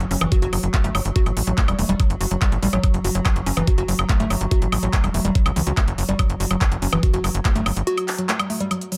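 Hypnotic and alien, this psychedelic trance passage sets a tight, punchy sequencer bass with a nasal, sawtooth bite up front against a knocking electronic kick that enters at 0.3 seconds. A woody, wave-folded pluck riff with chorus, delay and sidechain pumping weaves through crisp hats, handclaps and woodblock from the drum kit, while an evolving wavetable pad morphs in the background through chorus, phaser and its own reverb. The small-room sound carries light reverb and a digital ambience, and the bass drops out at 7.8 seconds.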